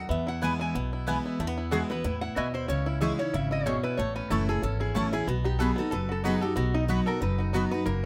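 A swung 4/4 pulse at 186 BPM drives this short, rustic bluegrass cut in E major, tuned to A4 = 442 Hz and moving through E, Eadd9, C#madd9, A and B. An upright bass with gut strings sits up front, woody and thumpy, while a jumbo steel-string acoustic guitar with fresh strings supplies picked, full-bodied accompaniment that stands just as close. Two melody voices share the lead: a twangy, percussive banjo played with fingerpicks and a nasal, metallic lap resonator guitar played with slide. A second resonator line adds a brief phrase from 1.4 to 2.1 seconds. A round-toned mandolin on double strings punctuates the tune with stabs from 0.4 seconds onward. The sound is dry and intimate, captured with close, detailed microphones.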